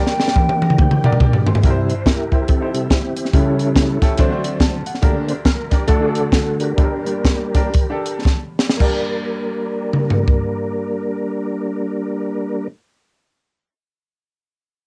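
A breathy, hollow alto ocarina opens this fervent, soulful uptempo gospel excerpt with a brief G5 melody over a drum fill, dropping out at 1.2 seconds while a bright, woody upright piano and a percussive tonewheel organ sound from the very start. The piano is slightly detuned with short sustain, ranging from deep bass to high treble. The organ sits up front with key click, third harmonic percussion, chorus vibrato and a slow rotary speaker. It adds a short fill before taking a clean, clear solo at 1.6 seconds over chords moving from Gm through C, A7/C#, D7 and D back to Gm in G harmonic minor. The crisp fusion kit, with its high-tuned snare, tight kick, dark cymbals and toms, drives a swung 4/4 feel somewhere between 106 and 142 BPM. The tempo slows through the later part of the solo, and a last drum fill precedes the kit stopping at 10.4 seconds. Cassette tape colours the ocarina and drums, and the whole excerpt sits in a moderate booth ambience.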